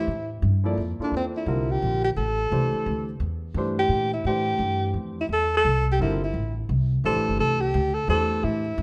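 Dark, warm production in a moderate recital hall sets this brief cut from a longer modal jazz piece in A phrygian, tuned to A4 = 436 Hz, swinging briskly in 3/4 at 173 BPM over a single Am7 chord. The alto saxophone leads up front with a warm subtone and vibrato, while the concert grand piano accompanies with natural tone, deep bass and audible action noise until 8.6 s. Underneath, the upright bass plays pizzicato on gut strings, woody and thumpy and placed up front, giving the spiritual, cool mood its grounding.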